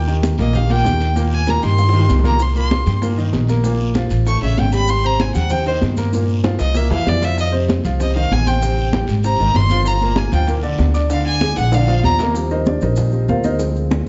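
A woody, growly pizzicato upright bass sits up front in this sunny, danceable Afro-Cuban jazz excerpt alongside a warm, vintage grand piano, while a clear, smooth bowed violin carries the melody with vibrato from 0.4 seconds until about 12.1 seconds. Behind them, high-tuned congas ring close and dry under hard hands, joined by soft, round low bongos, a raspy guiro, and grainy, mellow maracas, with drum fills punctuating the groove. The piano takes a brief solo from 12.3 seconds, all within a dark production and a moderate large-studio reverb.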